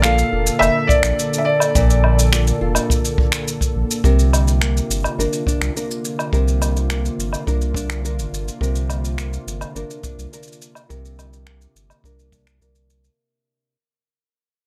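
Playful, warm folktronica at 105 BPM in a straight 4/4, cut from a longer piece, where a soft, felt-muted upright piano sings a mellow, intimate melody with plate reverb until 3.4 s over a smooth, detuned sawtooth pad with chorus, dark, woody fingerpicked nylon-string guitar arpeggios through a low-pass filter and tape echo, a round sine sub bass sitting up front, and small-room finger snaps, shaker and woodblock played with brushes, joined at 0.9 s by a boomy brushed kick drum, as the harmony moves from Bbmaj7 to C9sus4 at 4.0 s and the music fades out from there.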